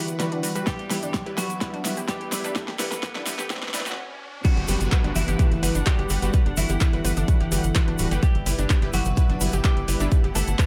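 A straight, steady pulse drives this uplifting, euphoric progressive house excerpt, with a punchy, up-front electronic kick arriving at 0.7 seconds alongside a deep house kit of fat snare, handclaps, metallic hi-hats and crash cymbal, plus a grainy egg shaker in the background. The opening build-up carries a drum fill while filter sweeps move across the bright, twangy twelve-string electric guitar melody, the detuned supersaw stabs and the lush unison pluck arpeggios, all under a very quiet riser and downlifter. After a brief stop, the drop lands at 4.4 seconds, and a tight, driving sawtooth sequencer bass enters just after, pumping against the kick. Behind it all, a dark chamber string section holds soft, bowed chords with light vibrato, while the harmony moves between Gmaj7 and Em/G. The mix sits in light digital reverb, with delay trailing the guitar, stabs and pluck, and the track is cut from a longer piece.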